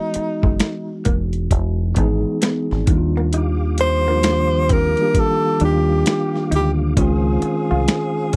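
A dry, close 1970s-style studio sound frames this relaxed 66 BPM neo-soul R&B excerpt with a swung sixteenth feel, where a breathy, whispered tenor saxophone with slapback echo carries the melody up front over mellow tine electric piano chords moving from Emaj9 through Ebmaj9 to Dbmaj9, a gritty, compressed sampler-style drum kit with finger snaps and a thumpy kick, a round, dark fingered bass, a hollow-body jazz guitar tucked in the background, and a soft, flute-like tonewheel organ on a slow rotary speaker entering at 3.3 seconds.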